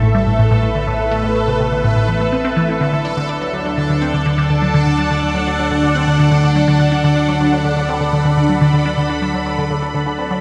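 A straight 4/4 pulse runs through this short slice of ambient, sequencer-driven space music, its mood mysterious and expansive as the harmony moves from A minor to D at 2.8 seconds. A juicy, squelchy blip pluck carries the riff in the low-middle register, its resonant filter, fast attack and short decay coated in phaser, delay and a cassette-tape grit. Above it, a thick, detuned unison pad sits up front with sustained chords, sawtooth bite and a sub octave, swirling with chorus and phaser and blooming into shimmer reverb. Underneath, an analog drone holds the bass with a warm, warbling, vintage pulse-width character and chorus. A bubbling stepped-filter texture hovers on a single high note with random resonant steps and its own reverb and shimmer, while a very quiet concert harp adds mellow, fingerpicked arpeggios that ring through a lush hall.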